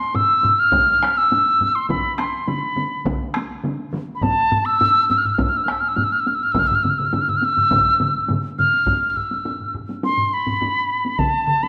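A mellow, airy wooden piccolo with rolled-off highs carries the melody up front from the start, tongued, unsteady and colored by vibrato in E miyako bushi, over a ceremonial, powerful Japanese taiko drum ensemble at 103 BPM in straight 4/4 built from four layered taiko parts (two struck with hard sticks in a small room, one with heavy sticks and a vintage, band-limited tone, and one with heavy sticks in a live room that enters at 1.9 seconds), the music steeped in a wet recital-hall reverb in this passage cut from a longer piece.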